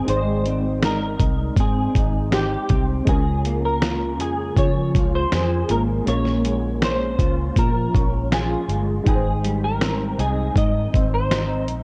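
Indie and bedroom pop at 80 BPM in Ab major, this sunny, nostalgic excerpt pairs a bright, clean picked electric guitar melody with a slightly broken-up guitar through a small old amp carrying chorus and vibrato, round analog keys with a filter sweep sitting in the background, a dark, foam-muted fingered bass, and a gritty, compressed sampler-style drum kit with a thumpy kick, all over Abmaj7, Db6 and Bbm7 chords and wrapped in light reverb and the warble of worn cassette tape.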